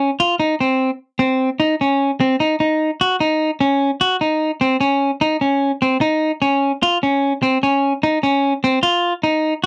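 A clean electric guitar opens the recording alone, its picked notes sitting close and up front in a dry, 1970s-style studio sound touched by light reverb. This is progressive instrumental music in an odd 7/4 metre with a straight feel, and the mood is tense and intricate. The guitar is compressed and warm, keeping its line between C4 and Gb4 across the whole 9.7 seconds it plays. A new section begins at 3.2 seconds and carries the guitar through to the end of this brief fragment, which is cut from a longer piece.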